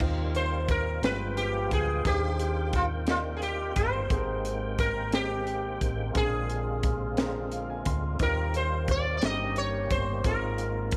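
A light, small-room reverb frames this jubilant, uplifting slow gospel excerpt in Eb major, rolling at 59 BPM in 6/8, where a bright, buzzing sitar enters up front at 0.4 seconds with a shimmering melody over a woody upright piano in the background (which plays a fill at 7.2 seconds), clean tonewheel organ chords with key click, chorus vibrato and a fast rotary speaker, a dark, round, punchy hollow-body electric bass, and a crisp fusion drum kit with a high-tuned snare, tight kick, hi-hat and crash, moving through rich chords such as Eb69, Cm9/Eb, Abmaj9 and Bb9.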